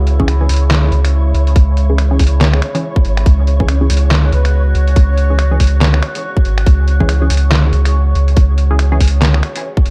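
Deep dubstep with a heavy, meditative half-time swing, where a tight, up-front electronic kick and a deep, round sub bass anchor a gritty, pitched-down trip hop kit of snaps, handclaps, hi-hat and snare, while a nasal, resonant drone with chorus, muted phaser-and-echo chord stabs and a flickering granular texture fill the dark production, and a breathy flute-like lead surfaces in the background only from 4.3 to 5.4 seconds.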